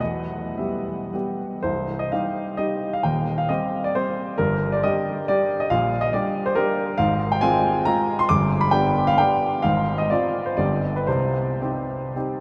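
Dotted rhythms shape this romantic classical dance in 3/4, played with rubato on a solo baby grand piano in C minor, its tempo drifting between 99 and 145 BPM. The mood is nostalgic and capricious: after a brief opening on E minor, the main passage from 1.6 seconds settles into C minor and moves through F minor and G harmonies before coming home to C minor at 11.1 seconds. The piano sounds natural and up front, with short sustain across a span from C1 to D6, yet it sits in a vast, echoing space whose huge, wet reverb rings on for 7.2 seconds, and this clip is cut from a longer piece.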